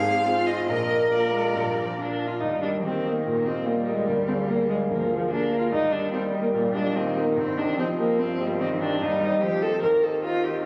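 A quick classical-period movement for piano quartet opens with violin, viola, cello and concert grand piano sounding together, moving at 145 BPM in 4/4 with a straight, lively and graceful feel in Eb major. The violin carries the melody with smooth, even bowing and vibrato from a distant position, while the cello plays an expressive second line, sliding between notes with portamento and vibrato from a similarly distant spot. Up front, the viola fills in the accompaniment with an evenly bowed, smooth-topped tone, and the piano adds a bright, brilliant accompaniment with deep bass and long, open sustain. At 2.4 seconds the music moves into a new section, passing through harmonies such as Eb, Bb7/D and Cm. The sound is that of a phone capturing the players in a wet recital hall, with added club reverb and compression, and the clip is cut from a longer piece.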